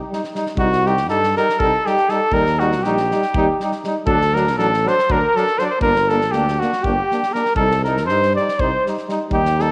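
A punchy cornet leads this fiery, restless Balkan brass band piece, playing the melody up front with a light vibrato and a classical poise. It moves in a brisk 7/8 at 240 eighth-note beats per minute in C dorian with a raised fourth, over a harmony that runs Cm, Eb, D, Gm and back to Cm. A very quiet flugelhorn carries a soft-edged second line from the first moment, sounding distant and roomy, while a bright, vintage-toned trombone and a background euphonium fill in the accompaniment. A mellow tuba joins on the bass at 0.6 s, and an acoustic drum kit with a medium-tuned snare and punchy kick, played with bundle sticks, keeps the percussion. A moderate echo-chamber reverb and small-room ambience surround the band in this short passage cut from a longer piece.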